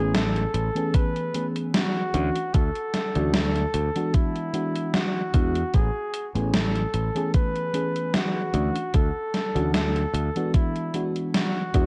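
A lightly swung sixteenth-note groove sets the pace: a gated 80s drum machine plays hi-hat and a snare with gated reverb and overdrive, and an overdriven, thumpy electronic kick joins at 0.9 seconds, both re-recorded in a small room and placed up front. This short vaporwave cut from a longer piece feels woozy and faded, moving through Amaj9, Dmaj9 and E9 chords. Underneath, a bright, growly fingered electric bass with tube saturation sits punchy and direct in the low register. A soft, round FM electric piano, dark in tone with a faint noise layer and lush chorus, carries the chords with fast-attack, decaying notes. On top, a warm flugelhorn sings a smooth, vibrato-tinged pop melody through tape echo. The whole recording has a cassette-tape character and a light reverb.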